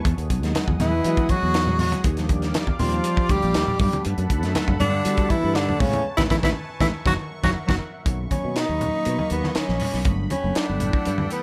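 A straight 120 BPM groove in 4/4 comes from a crisp, up-front fusion drum kit with a high-tuned snare and tight kick in a small pumping room, joined by bright, thin-skinned congas in the background and a growly fretless electric bass carrying subtle chorus. This slick, funky electric jazz fusion clip moves through lush chords, mostly major ninths, with a mellow tine electric piano and a detuned sawtooth pad with ring modulation filling the harmony. A tenor saxophone with subtone, vibrato and slapback echo takes the melody from 0.8 seconds, joined by a distant, roomy bass clarinet on a second line until 7.7 seconds, and after a band accent the saxophone solos from 8.1 seconds.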